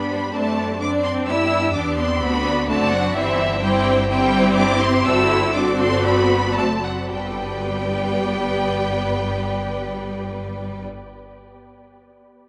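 Quick classical-period string orchestra movement in G major, lively and cheerful, moving at 111-128 BPM in 4/4 with a rubato feel that slows between 2.2 and 7.1 seconds before settling on G at 7.1 seconds. A clear, focused violin section carries the melody high above an intense second violin line, with a close viola section filling the accompaniment and a rich cello section and double bass section, smooth and even, anchoring the bass, all bowed with vibrato. The strings ring in a vast, echoing cathedral reverb, and this passage is cut from a longer piece.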